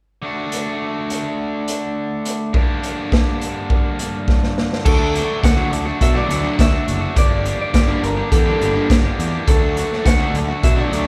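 This upbeat, jangly indie rock excerpt opens with a bright, biting overdriven guitar riff in D major, joined at 0.5 seconds by a raw garage drum kit that sits up front with a punchy kick, gritty saturation and a pumping small-room sound, moving at 104 BPM in a straight 4/4 with a drum fill leading into the second part. At 4.9 seconds a slightly broken-up, compressed guitar through a small old amp takes the melody while a fuzzy, overdriven picked bass enters beneath it, and a dark, crunchy overdriven guitar riff follows in the background at 5.0 seconds. The chords shift between D and G minor, later colored as Gmadd9, under a light reverb.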